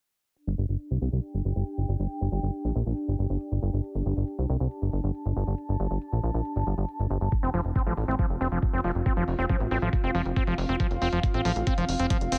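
A straight 4/4 pulse at 138 BPM drives this hypnotic, alien psychedelic trance excerpt, which opens with a roomy electronic hi-hat, a detuned, warbling lo-fi pad with chorus, reverb and sidechain pumping, and a punchy, funky plucky analog bass up front; a knocking, tape-warm kick drum lands at 7.3 s, a squelchy, gritty overdriven acid bass riff with distortion, delay and pumping follows at 7.4 s, and a very quiet, nasal vowel-sweep wobble bass flickers in at 9.5 s, while a filter sweep and light digital ambience shape the whole mix.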